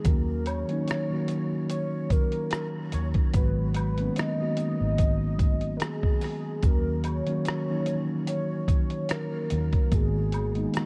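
A light reverb and a cassette-tape haze give this reflective lo-fi hip hop excerpt a dusty, hazy sound. Up front, a compressed, sampler-style soul drum kit lays down a gently swung groove with a thumpy kick, hi-hat and a gritty rim click. A mellow tine electric piano, clean yet tinted by its own tape coloring, also sits forward, voicing chords that alternate between D#m7 and G#m9. From 0.1 seconds, a dark, round, foam-muted electric bass holds the low end. Soft maracas and woodblock tick away in the background, set in a small room. Floating over it all, a smooth, velvety synth lead of detuned sawtooth with a sub octave carries the melody with sustained notes, vibrato, chorus and delay.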